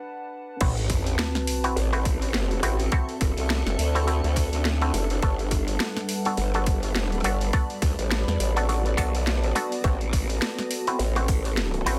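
Swung sixteenths at 104 BPM drive this swaggering, funky glitch hop excerpt in A dorian, where a moody, detuned analog pad holds chords alone until the drop at 0.6 seconds brings a tight, overdriven electronic kick, a layered drum and bass kit with cracking snare, bright hats and crash, a growling, wobbling bass up front, twangy auto-wah clav stabs through a combo amp with delay and gritty sampler crunch, and an electronic sub drop lasting to 2.9 seconds, before a blurred granular cloud pad drifts in behind at 2.5 seconds as the chords move from Am69 through D7 and Gmaj9.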